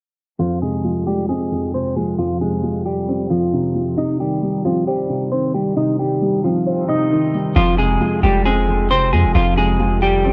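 A clean, hollow-bodied electric guitar carries the melody from 0.4 s over a soft, thick-felt muted upright piano, both sitting up front in this brooding, eerie trap excerpt at 134 BPM with a half-time feel, moving from Fm to Cm under a filter sweep. At 7.6 s the harmony returns to Fm and a deep, boomy 808-style bass with a fast attack and dark, decaying tone enters beneath them. The recording sounds dry and gritty, shaded by a low-pass filter and a touch of studio reverb.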